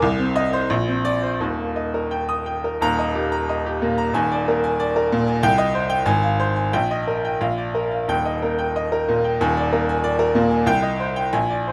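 A brilliant baby grand piano plays alone from the start, close and up front with little reverb, in a sparkling classical virtuoso study in Eb major. The rubato tempo moves between 83 and 97 BPM in 2/4, and the harmony opens on C minor before settling on Eb, later passing through Bb7 over Eb and F minor over Ab, then returning to C minor at 10.7 seconds. The natural, detailed sound spans the keyboard from Eb1 to Eb6 in this short passage cut from a longer piece.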